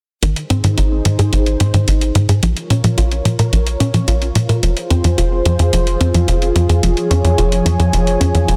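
A tight, punchy sequencer bass drives this moody, nocturnal synthwave excerpt at 109 BPM in a straight 4/4, its nasal sawtooth and square-wave tone sitting up front with a fast-attack filter pluck and a touch of tube saturation. Above it, a warm analog pad holds sustained chords from F3 to Ab5, its detuned sawtooth voice smoothed by chorus and tremolo while a filter sweep moves across it for the whole span from 0.2 to 8.6 seconds. Further back, a lush unison pluck spins delayed arpeggios between Eb3 and Bb4, its detuned layers carrying a noise layer and a moving notch. An electronic hi-hat with a sampler-style, tape-tinged character keeps time throughout. The chords move from Ab to Bbm, Fm and Db/F, all set in light reverb under a dense, heavily limited modern master.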